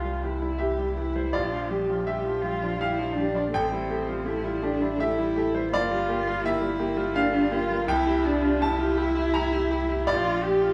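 Longing and reflective, this neoclassical piece for piano and strings drifts at 82 BPM in 3/4 with a rubato feel, set in G dorian and cut from a longer work. A bright upright piano carries the accompaniment from 0.0 to 10.7 s, its brilliant, woody tone sitting up front with audible action noise and a short, polished sustain. A dark cello takes the second line, bowed sul tasto by one player with vibrato and a close, up-front sound, while a single viola adds soft-attacked, airy accompaniment beneath it. A punchy sub bass anchors the low end with a deep, sine-like tone, a pitch-drop attack and sustained notes. The harmony moves through C, Gm7/Bb, Am7 and Gm7, and the ensemble plays live together in a stone room with a moderate reverb of about 1.0 s.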